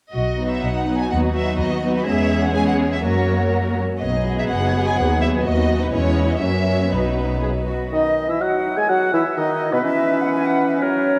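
In a straight, quick 2/4 at 124 BPM, this cheerful, spirited classical-period orchestral excerpt in B major opens with bowed strings: a rich violin section carries the melody over a woody second violin line and a dark viola accompaniment, while a distant cello section and an up-front double bass section hold the bass through B, C#m7/E and F# chords. At 7.9 seconds the strings have finished and the woodwinds take over on second lines until 11.2 seconds: an airy flute section, a present clarinet and a roomy oboe, above a mellow, up-front bassoon. A vast cathedral reverb gives the orchestra a long, echoing ambience.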